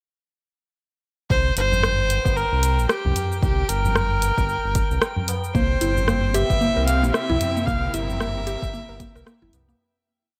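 A swung 4/4 groove at 113 BPM, with the 16ths pushed to 59% swing, drives this short, meditative organic downtempo piece from 1.3 seconds. A punchy, soft electronic kick sits under a layered deep house kit of rim click, cabasa and closed hi-hat, both in a small room. Low-tuned, ringing tabla sounds distant in the background, and a round, dark analog bass plays a syncopated riff with sidechain pumping. Up front, a clear, earthy kamancheh carries an arch-shaped motif melody with light vibrato, portamento and an airy bow, trailed by delay. Behind it, a glassy texture holds a single high note with drifting overtones and chorus. At 5.5 seconds a lush, bowed string section enters with slowly shifting chords, expressive vibrato and sidechain pumping, joined by a woody, mellow FM pluck running a 16-step arpeggiated sequence through chorus and digital delay. The harmony opens on C7, light reverb colours the mix, and a fade-out begins at 7.0 seconds.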